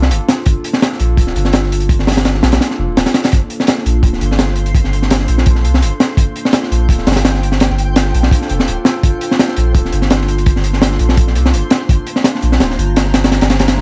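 Drum and bass with a jungle edge at 168 BPM in G minor, this frenetic, raw excerpt rides a crunchy, gritty breakbeat kit with a high-tuned snare and punchy kick, its kick dropping out briefly from 2.6 to 3.3 seconds, over a round, deep dub sub bass, with the harmony resting on a Gm7 chord. A warbly, nostalgic tape-like pad with chorus and reverb enters at 0.5 seconds, and a twinkling granular texture with an octave-up shimmer sparkles in the background from 4.0 seconds. The whole recording sits in light reverb with a layer of vinyl crackle.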